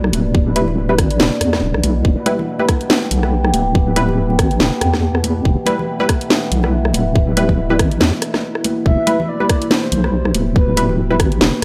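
A dark, cavernous deep dubstep excerpt in E minor at 141 BPM with a swung half-time feel opens on a resonant, overtone-sweeping drone, a deep soft wobble bass up front and a garage kit with a cracking snare, hi-hat and rim click, soon joined by distant bright congas with dub echo, a tight electronic kick, muted chorused chord stabs with dub echo, and, from 8.9 seconds, a breathy flute-like synth lead with vibrato, lush chorus and dub echo, all resting on a single Em chord in light digital ambience.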